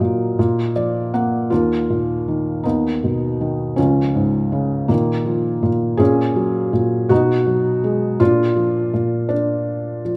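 A short fill on a felt-muted upright piano opens this brief, wistful classical fragment, running from 0.4 to 1.5 seconds before the main phrase begins. The solo piano carries the whole passage in a compound 6/8 metre, played with an unhurried rubato that gives it a melancholic, wistful feel. Its tone is soft, muted, mellow and intimate, with audible action noise and the piano placed up front, lending a close, vintage character. The harmony drifts through chords such as Db, Bbsus4, Gbadd9/Bb and Abm7/Cb before settling on Bb, spanning the instrument from its low bass to its upper register. A moderate scoring stage reverb surrounds the piano with a sense of space, and the recording ends at 10.2 seconds, clearly cut from a longer piece.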